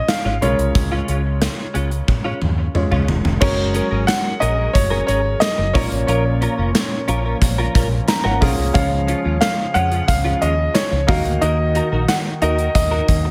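The gated 80s drum kit stands out first, its punchy kick, bright cymbals and gated reverb driving this uplifting, nostalgic 1980s-style pop excerpt at 90 BPM in F# major, with a fill from 2.1 to 3.4 seconds leading into a fuller passage. An intimate baby grand piano with audible action noise and digital delay carries the melody over grand piano accompaniment, which adds its own fill near 7.8 seconds, while a clean, compressed direct-recorded electric guitar plays a riff through ensemble chorus and delay, and a dark, foam-muted fingered bass sits round and up front. A smooth, detuned analog pad enters at 3.4 seconds in the background, a barely audible hollow group handclap joins, and the chords move from C# through F#add9, A#m and back to C# before closing on D#m in a small room.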